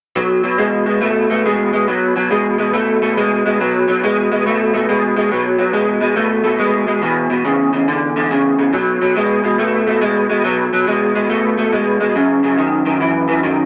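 A slightly broken-up, lo-fi electric guitar through a small old amp plays alone and up front from 0.2 to 13.7 s in this rollicking, soulful blues fragment at 140 BPM with a swung feel in B mixolydian, its picked, compressed low-register tone thickened by ensemble chorus as it moves through B5, E5 and F#5 in a moderate echo-chamber reverb with a dull, rounded top.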